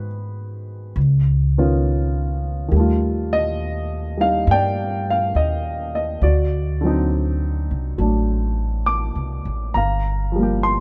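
A smooth, vintage-toned grand piano and a woody, up-front pizzicato upright bass begin together in this short, romantic and tender jazz ballad fragment at 68 BPM in a gently swung 4/4, tuned to A4 = 439 Hz, with the piano's short-sustain chords moving from Abm7 through Db9 and Ebmaj9#11 to D7b9 and Gm7 over the bass's low steel-string notes in a dry, close-sounding room.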